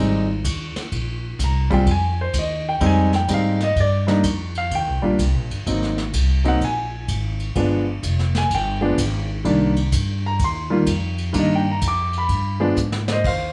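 A lightly reverberant studio sound frames this cool, late-night jazz piano trio excerpt in C minor, swinging in 4/4 at 127 BPM. The grand piano sits up front with a present, polished tone and a plate reverb, carrying the melody across its range from Eb3 to D6 as a solo throughout the passage. The upright bass, plucked and woody with a thumpy, dark steel-string tone, holds the low end close to the listener. The vintage kit joins at 0.4 seconds, played with brushes in a small room, its dark cymbals and rolled-off top giving a hushed backdrop from snare, hi-hat, ride, crash and a tight kick. The harmony moves from Fm7 through Ab7 and G7b9 to Cm7, and a drum fill at 12.8 seconds closes the cut from a longer piece.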